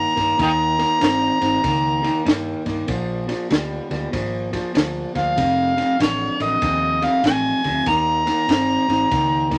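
Gritty and rollicking, this electric blues shuffle moves at 96 BPM in 4/4 with a swung eighth-note feel, and it is cut from a longer piece. An overdriven, amplified harmonica takes a jazz-style solo throughout, sitting up front with light vibrato, scooped notes and tongue slaps. Beneath it, an electric guitar played through a small old amp holds down a slightly broken-up, compressed, lo-fi riff, while a vintage foam-muted electric bass adds a dark, round low end. A compact cocktail drum kit joins at 0.2 seconds with a punchy kick, a high-tuned snare and dark ride cymbal, all sounding acoustic and dry. The harmony moves from Eb13 through Bb6 and F6 to Eb6, and the whole track carries moderate studio reverb and a layer of vinyl crackle.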